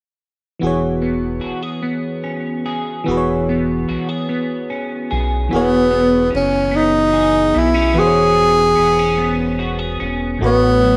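Lightly reverberant, this slow, sensual R&B passage in E major sways in 6/8 at 49 BPM, opening at 0.6 seconds on an E6 chord with a glassy, bell-like FM electric piano under chorus, a twangy electric guitar on the edge of break-up through analog chorus, and a rubbery, hollow square-wave bass sitting low and dark. At 5.5 seconds a breathy, close-miked tenor saxophone enters up front with scooped, jazz-style notes and a slapback echo, carrying the tender melody as the harmony moves toward an A69 chord. It is cut from a longer piece.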